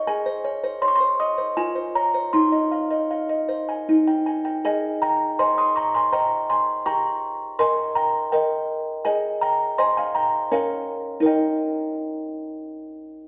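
Tender and dreamy, this classical lullaby drifts at 80 BPM in a gentle, straight 3/4, set in Ab major and cut from a longer piece. A lone music box carries it from start to finish, its delicate, tinkling plucked notes sounding mellow, airy and slightly out of tune, like a large box placed up front, ranging from Db4 up to Eb6. Moderate stage reverb surrounds a dark, warm production, and a new section opens at 4.6 seconds, running through the final cadence on Eb.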